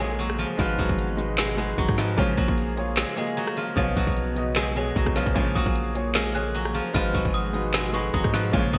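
A silvery steel-string zither, plucked with fingerpicks and ringing up front through a low-pass filter, carries the melody over a clear concert grand piano with audible action noise, a very quiet detuned analog pad and a deep, mellow sine 808 bass in this menacing, brooding half-time trap excerpt at 151 BPM. An overdriven trap kit with a hard-clipped kick, woody snare, crisp hats, claps and rim clicks drives hard under gated reverb, while a barely audible downlifter sounds until 2.2 seconds and lush bowed symphonic strings add brief stabs in the background. From 5.6 seconds a bright, inharmonic FM bell with chorus and digital delay adds a second line over the dark minor-seventh harmony, all wrapped in light reverb and bright 1980s-style digital production.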